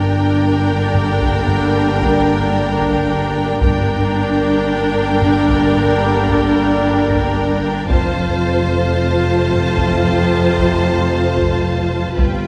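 A slow, straight 56 BPM pulse in 4/4 underpins this tense, mysterious cut from a suspense film score, with a close, dry taiko ensemble joining in the background at 0.9 seconds as the harmony moves from G minor to F at 7.9 seconds. A distant, smooth violin section carries the high melody over a focused, lush second violin line, even violas and a close cello section. Bowed double basses with a soft attack sit beneath them, while dark, roomy French horns and tight, vintage trombones hold sustained chords in the background. A huge, bright cymbal swell barely surfaces at 12.2 seconds, and the whole scene sits back in a reverberant scoring stage with a layer of vinyl crackle.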